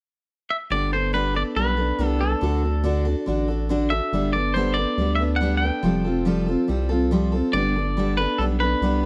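A straight 4/4 country groove at 141 BPM in G major sets a sunny, easygoing mood in this short cut, where a twangy, clean electric guitar carries the melody from 0.5 seconds over a bright, full-bodied picked steel-string acoustic guitar and a round, dark analog bass with a wave-folded, filter-swept tone, moving through Gadd9, D and Fadd9 in a dry, close 1970s-style studio sound.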